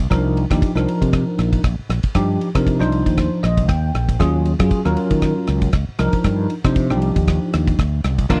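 A driving 117 BPM groove in 4/4 with a light 16th-note swing sets this intense electric jazz fusion piece in C minor, moving from Cm11 to Ebm11 at 4.2 seconds and back to Cm11. A punchy, bright fretless bass leads the low end alongside a dark, smooth drum kit with a tight kick, rim clicks, ride and crash, while a bell-like tine electric piano with analog chorus plays the chords and adds a fill from 3.2 to 4.2 seconds. A clean, hollow-toned semi-hollow guitar with lush chorus lands a brief stab at 8.3 seconds, all captured in a dry, close 1970s-style studio sound in this short cut from a longer piece.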